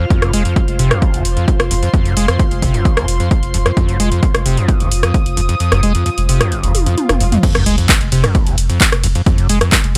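Driving peak-time techno at 131 BPM in a straight 4/4, relentless and hypnotic, cut from a longer piece and opening on an F5 chord. An overdriven acid bass carries the riff up front, squelchy and resonant with a square-wave edge, a filter sweep, distortion, analog chorus and analog delay. Beneath it, a saturated sine sub bass holds a deep, thick F through a low-pass filter. A punchy, layered electronic kick sits up front beside a techno kit of metallic hi-hats, handclaps, rim clicks, ride, crash and toms. High above, an airy, breathy pad, detuned and ring-modulated with a noise layer, drifts until 7.5 seconds. The kick drops out at 5.6 seconds, and a drum fill with a very quiet swell and sub drop leads into the drop and an impact at 7.4 seconds, with sidechain pumping on the two basses and the pad and a dry, gritty recording keeping the sound close and hard.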